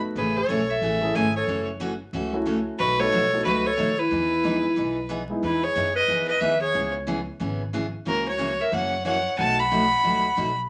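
Vinyl crackle and a wet studio reverb surround this cheerful, swinging western swing excerpt, taken from a longer country piece in E major at a brisk 182 BPM with a swing feel on the eighth notes. A clear, biting fiddle carries the melody up front, its airy bow and light vibrato sounding intense and close. Beneath it, a growling clarinet plays a raspy, gritty second line in jazz style. A bright, full-bodied dreadnought acoustic guitar is picked as accompaniment, while a pizzicato upright bass gives a thumpy, woody low end. A dark, worn, slightly detuned upright piano adds mellow accompaniment only until 5.4 seconds, as the harmony moves through chords such as Amaj7, B7 and Emaj7 and the repeated opening phrase begins again.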